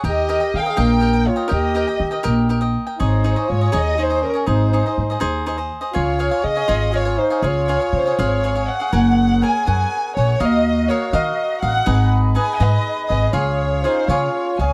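A dry, close 1970s-style studio sound frames this festive, proud mariachi piece in 6/8, cut from a longer work. Up front, a dark chamber violin section with vibrato carries the melody over a woody, thumpy pizzicato upright bass and a crisp, picked cavaquinho, while a classical-style solo trumpet with light vibrato adds a second line until 8.4 s and returns at 13.9 s. Just after the music moves into a new section at 8.9 s, a pure, soft-attack flute section enters in the background at 9.0 s with expressive sustained chords.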